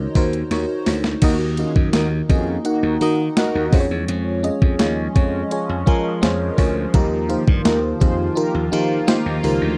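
A straight 4/4 groove at 84 BPM from a thumpy, overdriven 12-bit drum machine, with a fill from 0.5 to 1.2 s, drives this glossy, uplifting 1980s-style pop excerpt, where a growly slap bass and a lush, dreamy FM electric piano with chorus, tremolo and phaser play from the start, and at 1.2 s an airy, resonant sweeping pad and round, dark synth brass stabs join over Ebm, Db and Ebadd9 chords, all set in a dry, close studio sound with digital ambience.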